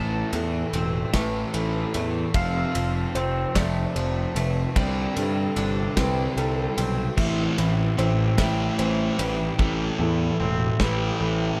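Dark, lightly reverberant production frames this brooding, cinematic post-rock build-up in A minor at 50 BPM in 6/8. A very quiet, bright pedal steel guitar holds sustained chords, while a soft felt-muted upright piano and a clean, scooped twangy electric guitar play delayed arpeggios, the guitar also lush with chorus. An overdriven semi-hollow guitar plays a riff in the background, a round fuzz picked electric bass sits up front, and a loose indie drum kit with a punchy kick and a pumping small-room sound enters at 0.3 s. A thick fuzz guitar riff pushes forward from 7.2 s over chords moving through Am, F, Csus2 and Am7.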